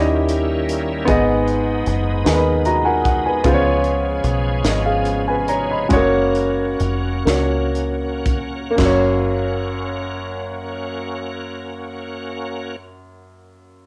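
Set in a slow, straight 6/8 that moves at about 37-51 BPM in dotted quarters, this slow gospel excerpt in F# major feels reverent yet jubilant, and it is cut from a longer piece. A woody, up-front upright piano carries the accompaniment with plate reverb and plays a fill from 2.3 to 3.4 seconds. Behind it, a full, shouting tonewheel organ holds sustained chords, lightly overdriven with chorus vibrato, a slow rotary speaker and plate reverb. A dark, round fingered electric bass with a foam-muted, punchy tone sits low, while a crisp fusion drum kit with bright cymbals, a high-tuned snare and a punchy kick sounds saturated and gritty from cassette tape, playing hi-hat, kick, snare and splash from 0.3 to 9.0 seconds. The harmony moves from D#7b9 through G#m and C#7 to F#, and the music slows down from 3.4 to 8.8 seconds, all heard in a moderate room with the character of a home cassette recording.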